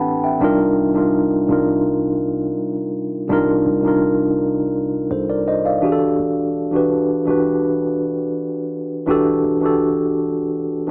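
Contemporary R&B in a sensual, moody vein, this short cut from a longer piece sets a mellow tine electric piano up front, clean and heard through built-in speakers, moving from Cm11 to Em11 over a deep, boomy 808-style bass that sits dark and sine-like in the background, with a brief electric piano fill at 10.5 seconds and light reverb lending the small-speaker sound a soft glow.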